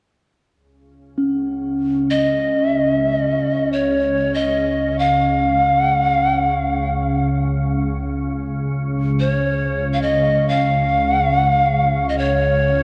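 World meditative music in free time and Db major pentatonic, this peaceful, calm passage is cut from a longer piece. A bronze singing bowl sounds first at 1.2 seconds, a ringing, metallic tone with slow beating, struck with a suede striker and carrying a vintage, band-limited colour until 10.2 seconds. An organ-like drone enters at 1.3 seconds, evolving and detuned with a slow attack and long release, its sustained low tones thickened by ensemble chorus and built-in reverb. From 2.1 seconds a breathy, mellow bamboo pan flute carries the melody up front, with vibrato, a soft attack, a touch of chiff and rolled-off highs giving it an unsteady, human quality. The whole is set in a wet church reverb with a dark, warm production that lets each tone hang in the air.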